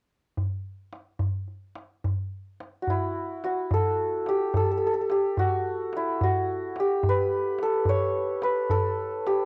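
A straight 6/8 pulse at 72 BPM, felt in dotted quarters, is set by the tombak from 0.4 seconds, its tight, soft-handed strokes sitting up front with a small-room sound. This is a stately Persian modal ensemble piece, cut from a longer performance. The santur enters at 2.8 seconds and carries the melody between E4 and C#5. Its hammered, shimmering, ringing tone is placed up front and sits a little louder than the drum. The music moves into a new section at 3.7 seconds, and both acoustic instruments carry on to the close of the short fragment, the tombak dropping out just before the santur. Light reverb and the homely grain of a cassette home recording give the performance a warm character.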